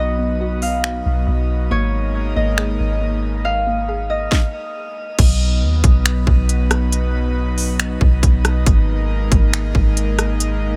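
A ringing Celtic harp melody with digital delay opens this spacious, melancholic cloud-rap excerpt at 138 BPM in a half-time feel, over an airy, breathy pad with chorus and sidechain pumping, a warbly, lo-fi pluck arpeggio sitting in the background, and a deep, round 808-style bass up front, all moving between B and G#sus2. A trap kit of hard-clipped kick, sharp snare, crisp hats, finger snaps, rim clicks and crash cymbal enters at 0.6 seconds, sounding tape-warm and close. The pluck drops out at 5.2 seconds and the harp at 5.9 seconds, leaving the pad, bass and drums in a dry mix.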